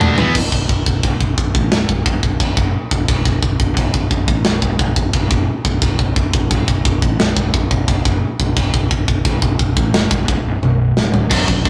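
Relentless and aggressive, this heavy metal cut moves in a straight 4/4, cut from a longer piece. A tight acoustic drum kit sits up front in a big room, with bright cymbals, a medium-tuned snare, a tight kick and toms, and china and crash cymbals adding bite; it opens with a short fill and adds another near 10.6 seconds. A fingered electric bass, growly and punchy with fuzzy overdrive, plays low throughout. Two picked high-gain electric guitars, a scooped one and a distorted one set in the background, play the riff only in brief bursts at the very start and again from 11.3 seconds. Light reverb colours the rough rehearsal-room recording.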